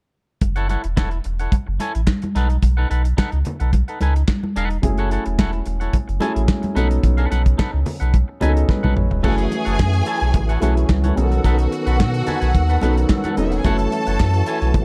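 A dark, warm studio production frames this driving, glamorous disco cut at 109 BPM in F# dorian, built on a deep, round sub bass and a dry, tight 70s drum kit with handclaps, both up front, while twangy clean guitar and ringing congas in the background fill out the groove over a F#m7 to B7 vamp. A grand piano with short sustain enters at 4.8 seconds and plays a fill ahead of a drum fill leading into the next section. At 9.2 seconds a lush, clear string section takes up a second line and a fat, lightly overdriven tonewheel organ adds sustained chords through a slow rotary speaker, its key click audible.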